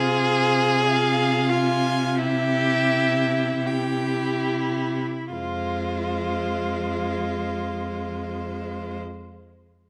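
In free time, this slow romantic movement for string quartet stretches and slows through its opening 5.3 seconds, setting a yearning, elegiac mood in F minor. A single first violin carries the melody between C5 and Ab5 with a focused tone, a smooth top and rich vibrato. Beneath it, the second violin plays its own line, expressive and marked by portamento slides. The viola fills in the accompaniment with an even, silken sound, while the cello anchors the bass from F2 to C3, close and full-bodied. All four bowed players sound together from the start, moving from Fm/C to C before settling on Fm at 5.3 seconds, where a new passage begins in this fragment cut from a longer piece. A moderate recital-hall reverb with an RT60 of 1.6 s gives the ensemble a gentle sense of space.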